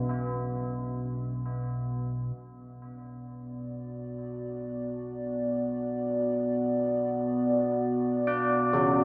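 Clangorous bronze church bells ringing out arpeggios through tape echo open this desolate, cavernous dark ambient drone excerpt above an ominous rumbling drone treated with phaser and subtle chorus, the bells fading in from 2.4 s before a moody, detuned analog pad with chorus and phaser arrives up front with sustained chords at 3.5 s, all of it set in a huge, wet reverb and heard as if from cassette tape on a small speaker.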